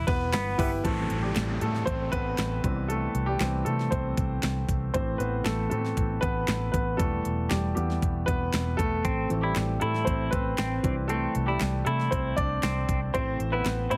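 Piano-driven pop in A minor at 117 BPM, bittersweet and dramatic, where a clear, polished baby grand with plate reverb sits up front and takes a solo from 0.8 s over a dark, foam-muted, punchy vintage bass and a layered electronic drum kit with knocking kick, fat snare, crisp hats, ride and handclaps, while a downlifter drifts in the background until 4.9 s and a twangy clean electric guitar riff with subtle chorus returns at 9.0 s, all through a heavily compressed radio sound in a moderate studio room, cut from a longer piece.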